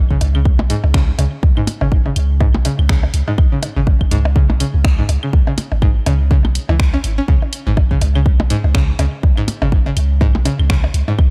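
A deep sine sub bass with a pitch-drop attack opens this minimal techno excerpt at 0.0 seconds, sitting on a C#5 chord and moving between G#1 and C#2 with sidechain pumping. Within a fraction of a second, an up-front, layered electronic kick drum and a twangy, string-like resonator pluck join at a steady 123 BPM in 4/4, with a 57% swing on the 16ths giving the groove a quirky, hypnotic lilt. The pluck carries the riff across a range of G#2 to C#4. Its bright, full-bodied sawtooth tone with a noise layer and filter sweep is shaded by chorus, tape echo and its own sidechain pumping. Lower in the mix, an analog drum machine adds finger snaps and hi-hat, its tape-warm sound re-recorded in a large room, while electronic percussion blips and claves trail tape echo of their own. All parts run for nearly the full length of the 11.3-second clip, wrapped in a dark, warm digital ambience.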